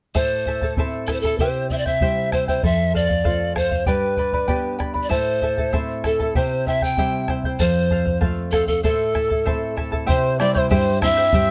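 A breathy bamboo pan flute carries the melancholic, earthy melody up front with vibrato and a soft, chiffy attack, over a fingerpicked charango with shimmering double strings and a full-bodied, deep nylon-string guitar in this Andean folk excerpt in a straight two-beat feel. A round, close and dry bombo joins almost at once, and at 10.1 seconds a bright, tongued cane quena adds a high second line. Light reverb gives the ensemble a touch of space.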